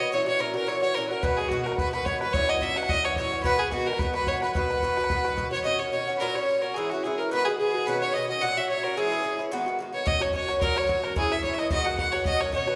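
A clear, intense fiddle with light vibrato leads this lively, rollicking, lightly swung Celtic reel up front, joined from the start by a reedy, slowly beating accordion in the background and a metallic, double-strung picked Irish bouzouki, while an open, boomy bodhran drops in at 1.2 seconds, falls out at 5.4 and returns at 10.1, the ensemble heard in the lush reverb of a recital hall in this fragment of a longer piece.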